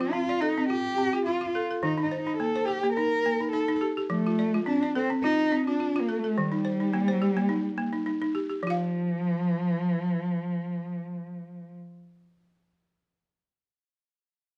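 A single bowed cello carries the melody in this hypnotic, flowing West African traditional excerpt, its dark, expressive line colored by vibrato, soft attacks and sliding portamento. Alongside it, a woody, buzzing balafon struck with hard rubber mallets plays dry arpeggios over a lightly swung sixteenth-note feel, moving between F and Eb before the harmony drops away at 8.6 seconds. The cello stops at 11.7 seconds, leaving the balafon alone until 12.4 seconds in a small, moderately reverberant room with a dusky production.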